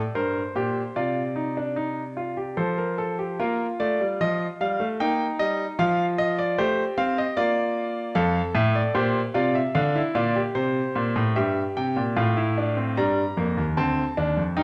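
A clear concert grand piano with a deep bass and long sustain plays alone, up front, through this driving yet solemn classical passage, a baroque-style three-part fugue in B-flat major at 75 BPM in 3/4. Cut from a longer piece, it runs about 14.6 seconds, moving from F toward B-flat, then through F7 and C7 to settle on a G minor chord at 13.0 seconds. A moderate recital-hall reverb gives the natural piano tone a sense of space.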